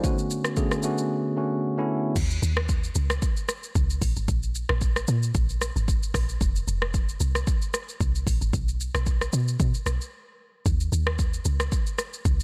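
Amapiano at 113 BPM in 4/4, with a lightly swung sixteenth-note feel and a soulful, late-night mood, heard in a short cut from a longer piece. A clean, direct tine electric piano sits up front over an opening Bm9 chord, accompanied by an electronic, produced afro-pop drum kit of deep kick, metallic hi-hats, rim click, shaker and crash cymbal. The piano's part ends by 2.2 seconds, after a brief silent gap that sets up the drop. At 2.2 seconds the deep log drum bass arrives up front: round, percussive and dark, an FM tone with a noise layer, a fast attack and a decaying tail. The harmony moves through Dbsus2, Absus2 and F5 before a stretch with the chords dropping out, and a short break at 10.1 seconds gives way to a return to Dbsus2 as drums and log drum carry on. A digital ambience surrounds the mix.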